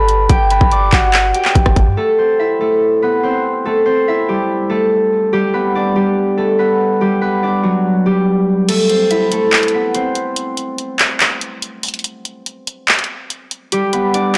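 Dark and melancholic, this half-time trap cut at 143 BPM in A dorian is led by an up-front, fingerpicked concert harp whose ringing acoustic tone carries the melody over Am7, G and Am chords. A deep, boomy sine 808 bass and a trap kit with bright hats, a hard-clipped kick, handclaps, rim clicks and crash open the piece, then drop away at 2.0 s to leave the harp alone. The kit returns at 8.7 s with the kick muted, sounding like it was re-recorded in a small room, and breaks at 10.4 s, all under light reverb in a blown-out, overdriven recording.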